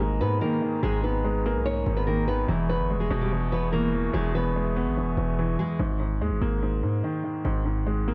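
A half-time hip hop groove in 4/4 sets a melancholic, eerie mood in this short cut from a longer piece. A heavy, aggressive 808-style bass sits up front with a distorted, decaying sine tone and a noisy edge, while a soft, felt-muted upright piano supplies mellow, intimate accompaniment, its low register rounded by a low-pass filter. From 0.2 seconds a fingerpicked nylon-string guitar carries the melody with a fresh, deep classical character, also filtered and placed close. Behind them, a glassy, ethereal glass harmonica holds slow-blooming chords with a gently beating, vintage quality. At 5.8 seconds the guitar and harmonica drop away, leaving piano and bass to close out the passage in a small room with light reverb.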